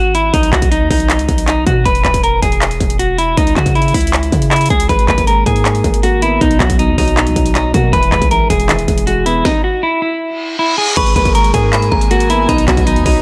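A dry, hard-hitting mix opens this brooding trap excerpt, cut from a longer hip hop piece in G# minor at 158 BPM with a half-time feel. A clean, dark, picked electric guitar carries the melody up front through a low-pass filter, sitting over a deep, sine-toned 808-style bass with long decaying notes, while a layered, distorted techno kit pushes a cracking snare, metallic hats, handclaps and crash to the front. At 4.9 seconds a felt-muted upright piano joins with soft, intimate chords, its thick felt and audible action noise softened further by a low-pass filter, moving through G#madd9, Bmaj7 and E. The harmony stops at 9.5 seconds, and a reverse cymbal and downlifter creep in from the background at 10.4 seconds. From 11.0 seconds the second section brings a ringing, inharmonic FM bell line with chorus and digital delay, plus a distant, floating string section holding pure, sul tasto chords behind the returning G#madd9 and B.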